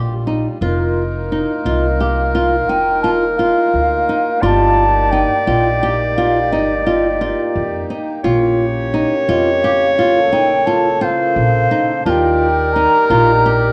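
Contemporary chamber music in a restless, shimmering 11/8, cut from a longer piece, where a reedy, breathing pedal harmonium holds sustained chords beneath dark, fingerpicked flamenco guitar arpeggios and thumpy pizzicato upright bass, a bright, up-front clarinet adds a second line from 0.6 s, and a hollow, distant wooden flute with vibrato carries the melody from 1.7 s, all set in a moderate recital hall and coloured by worn cassette tape with warbly pitch drift.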